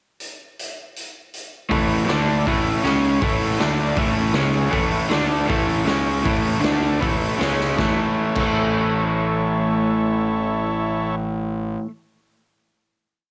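A crunchy, overdriven electric guitar sits up front, double-tracked and picked, hammering out a power-chord riff in A major at a brisk 158 BPM in straight 4/4 through this short, swaggering garage rock piece. The raw drum kit opens alone at 0.2 seconds with a pickup bar, its punchy kick, medium-tuned snare, dark cymbals and hi-hat sounding gritty and saturated with a rolled-off top, as if played in a bright stone room. At 1.7 seconds the guitar, a fuzzy picked electric bass and a reedy vintage combo organ crash in together, the bass driving eighth notes that double the guitar riff while the organ holds clean triad chords with a light vibrato. The riff rocks between A, D5 and C#5 until a drum fill at 7.6 seconds sets up a final A chord that rings out to the end. Captured at home on cassette with little reverb, the whole thing has a rowdy, tape-worn grit.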